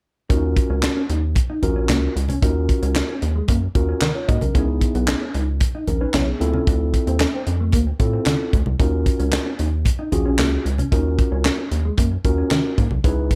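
A rubbery, hollow square-wave bass sits up front in this slick, late-night early-eighties boogie funk excerpt at 113 BPM, alongside a tight drum kit with a high-tuned snare, handclaps and gated reverb, a mellow tine electric piano, a clean fingered electric guitar riff bathed in lush chorus, and low-tuned congas in the background, all moving through Ebm9, Dbm9 and Dm9 chords across about 13 seconds.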